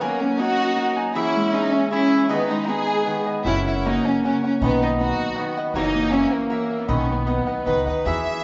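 A rubato 3/4 lilt at 157 BPM carries this proud, romantic mariachi passage in B major, where a lush, vibrato-rich violin section sings the melody up front, a mellow, distant trumpet traces a second line in the background, crisp picked cavaquinho and ringing fingerpicked Celtic harp arpeggios fill in the accompaniment, and a woody pizzicato upright bass joins at 3.4 s, all set in a reverberant recital hall that keeps the top end soft.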